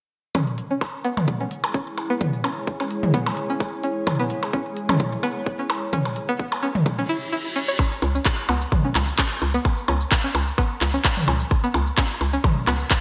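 A twangy, string-like resonator pluck riff with a filter sweep opens this cool, hypnotic minimal techno excerpt in C# minor at 129 BPM, riding a tight, tape-warm electronic kick, a drum kit of smooth hats, cabasa and handclaps, and electronic toms and percussion blips re-recorded in a large room, all with a light swing on the 16ths. From 1.7 s to 7.3 s a deep, moody ambient pad and a swarming, detuned granular drone in the background pump against the kick, before a reverse cymbal leads at 7.8 s into a section where a hollow, bouncy FM bass knocks on C#2 under the riff. The bright 1980s-style digital production sits in a lush hall reverb, with gated reverb on the drums and digital delay on the pluck and percussion.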